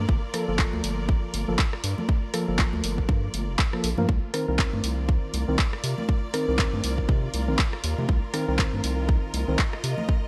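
A punchy, layered electronic kick drum sits up front in this hypnotic, smooth deep house excerpt at 120 BPM with a swung 16th feel, alongside a round, deep analog bass and hollow, chorused organ stabs with digital delay, analog drum-machine handclaps, hi-hat and rim click, congas in the background, and a lush, bowed string section, with the bass, stabs and strings pumping to the sidechain as the chords move from Gm9 to Cm7 at 4.1 seconds in a bright, dry 1980s-style digital production.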